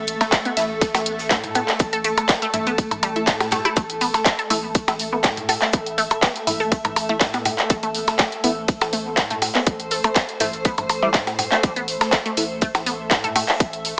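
Minimal techno at 122 BPM in A minor with a light swing, hypnotic and clinical, cut from a longer piece and heard through a small speaker in a modest room. A tight, layered electronic kick sits up front with a punchy analog drum machine of handclaps, hi-hat and rim click, while tape-warm electronic percussion blips and toms carry dub echo; a very quiet acoustic arena kit adds a fat hall snare and hi-hat, with a brief drum fill at 3.4 seconds. Underneath, a deep sine sub bass with a pitch-drop attack pumps with sidechain compression. A squelchy, bright resonant blip pluck riff runs through phaser, cassette tape and dub echo, and a muted, nasal filtered chord stab with a moving notch enters at 0.6 seconds, all over a cloudy, evolving granular pad blurred by its own reverb.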